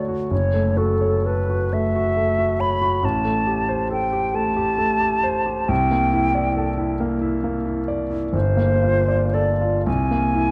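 Set in a moderate recital hall with a dark, warm production, this short excerpt of an impressionist classical duo places both the flute and the grand piano up front. The mood is pastoral and luminous, moving at a slow 45 beats per minute in 6/8 with uneven beats and free rubato. The concert flute carries the melody between A4 and B5 throughout, its hollow, pure tone close-miked and shaded with vibrato and tongued notes. The grand piano accompanies from Gb1 up to D5, sounding clear and intimate, with the natural noise of its action audible. The harmony drifts through colorful extended chords, from Gbm7 at the opening through Am7, C13 and Gm9 to a Caug7 at 9.9 seconds.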